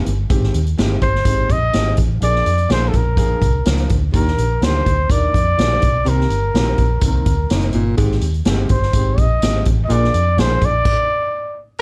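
A straight 4/4 groove from a roomy, distant big-band drum kit with a punchy kick drives this joyful, uptempo 1960s-style soul fragment, as a breathy, up-front trumpet carries the melody with scooped notes and light vibrato over intimate grand piano accompaniment and a dark, foam-muted fingered electric bass, while a mellow subtone baritone saxophone adds a riff from 4.1 s to 10.1 s before the band hits a stop at 10.9 s, all set in light reverb.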